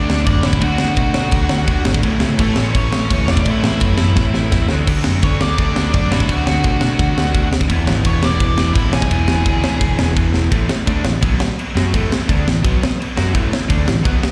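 A straight, driving 4/4 pulse powers this energetic, rowdy punk rock passage, which is cut from a longer piece. The tight metal drum kit sits up front with a high-tuned snare, bright cymbal crashes and a taut kick, and fills around 4.2 seconds and again near 10.3 seconds. The growly, punchy overdriven bass anchors the low end, while three rhythm guitars grind through the riff behind it: a double-tracked, high-gain distorted part, an overdriven part touched with slapback echo, and a very quiet, sludgy one. Over the top, a dark, nasal lead guitar with a parked wah carries the melody through overdrive, slapback echo and digital delay, then drops out at 10.1 seconds as the music moves from D, A and E to a closing section on A. The sound is that of a live gig heard through the venue's PA, with a recital-hall ambience around the band.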